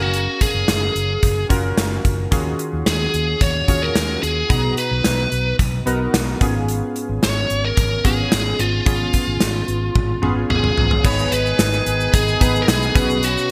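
This excerpt of 1980s-style pop opens at once with a biting, overdriven lead guitar carrying the melody up front, its picked lines trailed by delay, over glossy chorused synth keys built from detuned sawtooth and pulse-wave tones with filter sweeps. Within the first instant a gated drum kit joins with a punchy kick, a medium-tuned snare and bright cymbals in a stony gated room, driving a straight 4/4 at 110 BPM with an urgent, dramatic mood. Underneath, a mellow fretless electric bass adds a dark, round low end thickened by analog chorus, moving through lush harmony from Gbmaj7 and Ebm11 to Bmaj7 and Db7/Ab. A drum fill from 10.0 to 11.0 seconds leads into a new passage where the chords shift to Abm and then Bsus2. At 11.0 seconds a vintage brass ensemble enters with soft-attack sustained chords and light vibrato, joined by a very quiet, grainy egg shaker, all set in a bright digital production with a lush hall reverb.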